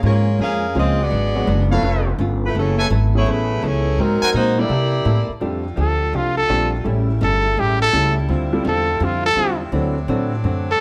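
A swinging 4/4 pulse at 167 BPM drives this brassy, joyful jazz excerpt, cut from a longer piece. A pizzicato upright bass with a woody, up-front tone anchors the low end, while a dark, compressed hollow-body electric guitar and an intimate grand piano, its action noise audible, fill in the accompaniment. A mellow, tightly blended saxophone section carries the opening melody over rich extended chords, and from 1.7 s a trumpet section adds soft-attack stabs with a smooth top. At 5.4 s the harmony settles into F major and a second saxophone section sits in the background with sustained, roomy chords, as a punchy, forceful solo trumpet takes the melody from 5.8 s with light vibrato. A touch of reverb gives the band a gentle sense of space.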